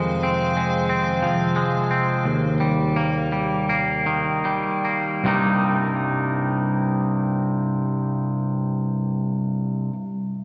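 Melancholic and cinematic, this rock fragment from a longer piece opens with an icy, crystalline glass pad holding sustained chords through chorus and its own reverb until 2.2 seconds. A clean, twangy electric guitar sits up front, playing arpeggios bathed in spring reverb across the whole passage as the pace slows until 5.2 seconds, moving from Fm7 to Eb and then Cm7. The lingering church-like reverb gives the sound a cavernous, softened top end.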